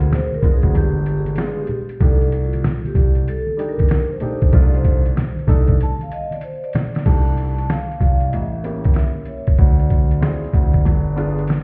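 Mellow and nocturnal, this jazz-hop excerpt in C dorian swings at 95 BPM, with a ringing, airy vibraphone carrying a solo melody through the first 7.1 seconds over a warm grand piano's accompaniment, a dark, long-sustaining baby grand piano playing the bass up front, thumpy, pitched-down sampler-style drums with a fill from 5.8 seconds, and soft-handed congas and tube shaker in the background until 7.0 seconds, all heard muffled as if through a wall in a stone room.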